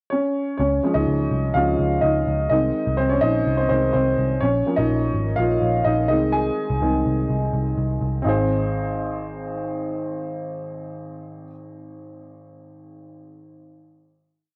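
Recorded at home on cassette with a moderate spring reverb, this short, uplifting piano-driven pop piece in Ab major moves at 125 BPM in a straight 4/4: an up-front, woody, slightly detuned upright piano with cassette-tape colouring and long sustain leads a Db, Ab, Bbm, Ab/C verse with syncopated, close-voiced chords from 0.6 seconds, while a dark, round, foam-muted picked electric bass drives eighth notes beneath until 11.5 seconds, and the piano holds a final Ab chord that rings on to 14.6 seconds.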